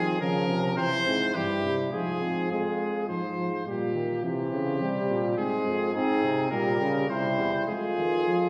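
A classical imitative canzona for brass ensemble in 3/4 at 104 BPM, contemplative yet driving, with a clear trumpet carrying the melody up front over a dark, soft-attacked flugelhorn second line, a warm trombone accompaniment and a bass trombone, the trumpet and trombones touched with light vibrato, all four heard from further back in a roomy recital hall as the harmony moves through F minor and C chords across this brief cut from a longer piece.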